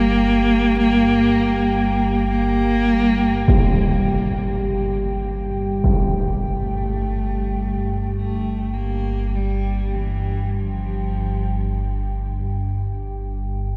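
A slow, ominous dark ambient drone in G minor at 51 BPM opens on a G minor chord. A deep, rumbling low drone sits up front with phaser and its own reverb, joined by a moody, detuned analog pad with chorus, a metallic singing bowl ringing softly in the background, and a woody bowed solo cello carrying a vibrato-laden melody through delay. At 3.5 s the harmony drops away as a huge, low-pass-filtered impact sounds until 6.1 s, while the cello fades in over the rest before stopping at 12.3 s, all within a dreamy mix soaked in vast reverb that gives this excerpt from a longer piece a cavernous feel.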